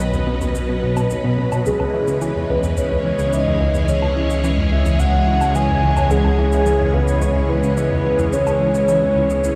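Bathed in a huge, washing reverb with a 7.0-second tail, as if played through a big sound system in a bare room, this excerpt of sequencer-driven ambient space music feels expansive and hypnotic. Up front, a bright, swirling vintage string machine holds sustained chords through ensemble chorus, phaser and shimmer reverb. Behind it, a tight, detuned sawtooth sequence drives a riff with chorus and tape echo, a fat, thick analog bass with a moving filter notch anchors the low end, and electronic cabasa and woodblock sit far back with their own tape echo. At 1.7 seconds a soft, round lead layered with a sub octave enters with the melody, its triangle and sine tones carried by chorus, vibrato, shimmer reverb and echo.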